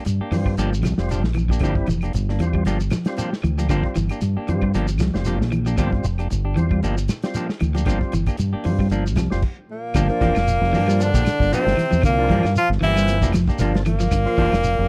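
A driving, funky afrobeat groove in G dorian at 115 BPM opens with a dark, smooth soul drum kit and clean, hollow-body guitar stabs, quickly joined by a round, punchy fingered bass up front, grainy shekere, a fat percussive tonewheel organ on a slow rotary speaker, a slightly broken-up picked guitar playing arpeggios through spring reverb, and faint woody claves. During a stop from 9.4 to 10.0 seconds, an edgy, close-miked tenor saxophone takes the melody up front at 9.7 seconds, with a clear trombone adding a second line in the background. The dry, close 1970s-style studio sound keeps the whole band intimate, and the piece is cut from a longer performance.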